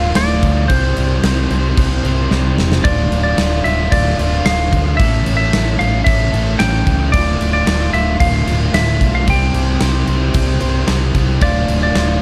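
Brooding and cinematic, this 12-second post-rock cut from a longer piece moves at 112 BPM in D minor, with a twangy, bright lap steel carrying the melody high through analog delay over a double-tracked overdriven electric guitar riff bathed in spring reverb, a punchy, amped fingered bass, and a huge arena drum kit with bright cymbals and a pumping room sound that enters at 0.2 seconds and throws in a fill at 2.3 seconds, all framed in a dark, dry production as the chords cycle through Dm, C and A.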